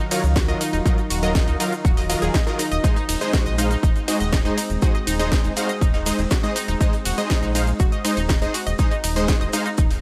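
Expansive and bittersweet, this progressive house passage, cut from a longer piece, moves in a straight 4/4 pulse with a single chord change at 2.8 seconds. A lush, warbling unison pad sits in the background with thick, vintage sustained chords softened by chorus, while a detuned analog pluck spins bright, decaying arpeggios through chorus and delay. Punchy, full-bodied supersaw stabs with a mellow edge cut in with delay, and a round, deep analog bass holds down the low end with a dark, sustained tone. A punchy electronic kick, entering at 0.4 seconds, sits up front, joined by a tape-warm house kit of hi-hat, ride, shaker and cracking snare, with a very quiet acoustic kit of hi-hat, shaker and medium-tuned snare beneath, its top rolled off. Sidechain pumping breathes through the pad, pluck, stabs, bass and the house kit's cymbals and percussion, all set in a digital ambience.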